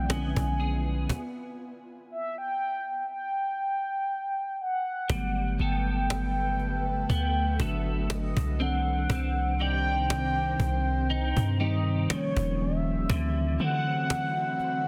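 A horn-like synth lead with chorus and delay carries the melody over a dim chord, mellow tine electric piano, an ethereal pad, chorused guitar arpeggios and a boomy 808-style bass in this smooth, romantic contemporary R&B excerpt at 60 BPM in G major, with a woody, close cajon driving a lightly swung 16th feel. A stop holds from 1.1 to 5.1 seconds before the groove moves through Gmaj9 and Cmadd9 toward Eb9 and D9. The round, vibrato-laden lead, deep bass and hard-handed cajon sit up front in a dry, dense and heavily limited mix, while the airy, detuned pad adds its own built-in reverb.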